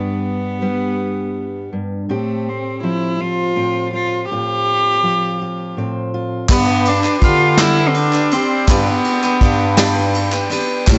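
A dark, reverberant studio sound frames this nostalgic, uplifting indie folk excerpt in 6/8 at 55 BPM in G mixolydian, where an intimate, nasal cello carries the melody with an airy sul tasto bow and light vibrato over a fingerpicked acoustic guitar with audible finger squeak, moving between G and Fadd9/A, until at 6.5 s the arrangement builds with a bright, full-bodied picked jumbo guitar, a ringing glockenspiel second line, a smooth bass clarinet bass, vintage brass chords in the background, a brushed drum kit with dark cymbals and a punchy kick, and very quiet crisp handclaps and jingly tambourine.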